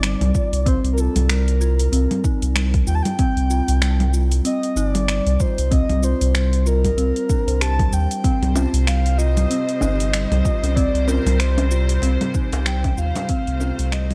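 A breathy, flute-like synth lead with subtle chorus and digital delay opens this hypnotic, mystical organic downtempo excerpt in C dorian at 95 BPM, alongside ringing steel tongue drum arpeggios with delay, a round analog bass up front with sidechain pumping, and a swung deep house kit of congas, finger snaps, metallic hi-hat and shaker, joined almost at once by a deep, tape-warm electronic kick. A distant, smooth symphonic string section adds sustained, sidechain-pumped chords from 8.2 s, and a hard-handed djembe sits in the background from 8.6 s. The excerpt carries studio reverb throughout and fades out from 11.6 s.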